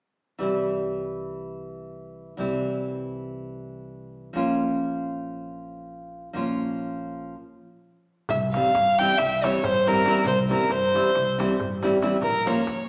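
In a straight 9/8 at 274 BPM counted in eighths, this restless, virtuosic slice of Balkan wedding-band folk opens with fingerpicked nylon-string guitar, deep and up front with audible finger squeak, over woody pizzicato upright bass moving between C and B-flat minor, breaks for a stop at 7.3 seconds, then at 8.3 seconds brings in a dark, boxy bowed violin melody with light vibrato and a clay-shell darbuka sitting close and dry in the background, the whole band heard from further back in a wet recital hall through a small-speaker sound.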